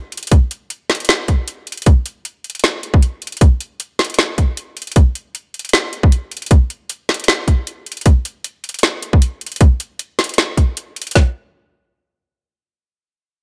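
A half-time 4/4 groove with a 55% swing on the 16ths drives this lush, emotional future bass passage, carried by two electronic trap drum kits placed up front in a digital ambience. One kit pairs a hard-clipped kick with a woody snare, while the other adds metallic hi-hats over its own snare, and both share a tape-warm, produced finish. The drums run from the opening until about 11.3 s, when the music turns to a brief second section that lasts until 12.7 s.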